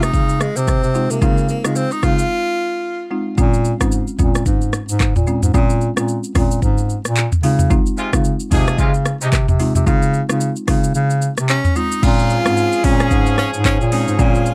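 Hypnotic and sultry, this afrobeats excerpt in Bb minor moves at 111 BPM with a swung sixteenth feel. It is built on an up-front electronic drum kit with deep kick, metallic hats, handclaps, rim clicks, shaker, toms and crash, a mellow bass clarinet with vibrato and subtone, and a dry, woody folk marimba. A breathy, close-miked tenor saxophone with scooped notes and tape echo carries the melody for the opening 3.1 seconds and returns at 11.5 seconds, while a clear, tight horn section adds a second line from 8.0 seconds, and the kick briefly drops out from 10.9 to 12.0 seconds, all in a space with little reverb.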